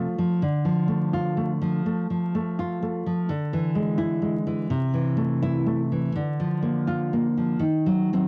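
A rubato 4/4 at 83 BPM sets an unhurried, melancholic pace for this short excerpt of a romantic piece for solo classical guitar, tuned to A4 = 442 Hz. The fingerpicked nylon-string guitar sits up front, dark and full-bodied, spanning C3 to F4 through Dm, E7/D, Am/C and Bb/D before reaching D#m6 at 7.6 seconds. The intimate home cassette recording carries a tape character on the guitar, a wet booth ambience and a vinyl crackle.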